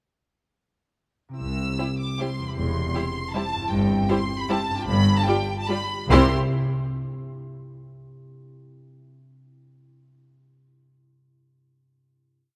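A lush violin section carries the melody high above this short, elegant orchestral ballroom waltz in C major, its bowed line focused and smooth on top with a singing vibrato. The piece moves in a sweeping, rubato 3/4 at around 139-168 BPM, with a ringing concert harp opening at 1.3 s in rolled, fingerpicked arpeggios. Cellos and double basses enter at 1.4 s, the cellos close and full as they mark the bass on the beats and hold it through sustained notes, while the distant basses double that line with a light vibrato. From 1.8 s a clear second violin section and a close viola section fill the middle with after-beat chords and sustained harmonies, the violins smooth and even, the violas rich and focused. The simple progression settles on a final C chord at 6.1 s, bathed in a moderate concert hall reverb that lends the string ensemble an airy glow.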